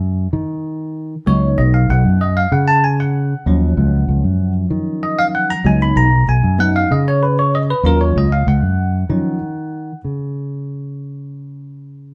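Recorded with the band live in one room under a moderate studio reverb, this tense, brooding progressive instrumental excerpt in Eb minor moves in 7/8 at 192 BPM, with a punchy, up-front fingered electric bass and a bell-like, bright tine electric piano treated with phaser that enters at 1.3 s and takes the solo over Ebm, Db7sus4 and Ebm7 chords until 10.0 s, after which the bass carries the unaccompanied closing section to 12.1 s.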